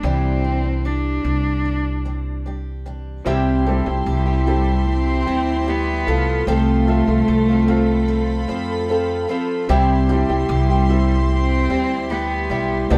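Sunny and easy-going, this pop piece, cut from a longer work, has the relaxed, straight feel of a band playing together in one lightly reverberant room. A dark, bowed cello carries the melody with vibrato and a smooth top, over a fingerpicked twelve-string acoustic guitar whose old strings give a boxy, shimmering, octave-doubled sound. A jumbo steel-string acoustic guitar picks full-bodied arpeggios in the background, while a woody pizzicato upright bass sits up front. At 3.2 seconds a felt-muted upright piano joins in the background with soft, mellow, short-sustained accompaniment, and at 3.3 seconds an intimate chamber string section adds sustained chords played sul tasto with light vibrato. The harmony opens on Cadd9 before moving through C, F over C and back to C.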